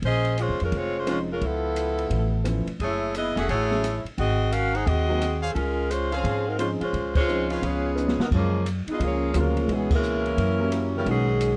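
A dry, close 1970s-style studio sound with light reverb frames this joyful, swinging big band excerpt at 174 BPM in Db major, moving to F# major at 8.3 s after a short drum fill. An up-front saxophone section with soft-attack vibrato carries the melody over woody, thumpy pizzicato upright bass and a small-room drum kit with dark cymbals, a high-tuned snare and a boomy kick, while an intimate grand piano with audible action noise and long sustain adds accompaniment. A bright trumpet section with a smooth top punches in stabs from 3.4 s, and a tight trombone section takes up a background second line from 7.6 s, with the full band striking accents along the way.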